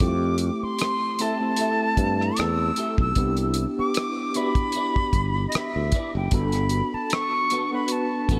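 Soulful and smooth, this neo-soul R&B excerpt sets an airy, vibrato-rich jazz flute with a crisp, chiffy attack over clean electric piano treated with ensemble chorus, a growly, up-front fretless bass, and a cloth-damped, thuddy drum kit of hi-hat, tight kick and rim click. At 1.2 s a slightly broken-up electric guitar joins in the background as a picked, compressed second line with chorus and delay. A lush hall reverb soaks the dreamy mix as the harmony moves through Fmaj9, Cmaj9 and Gmaj9.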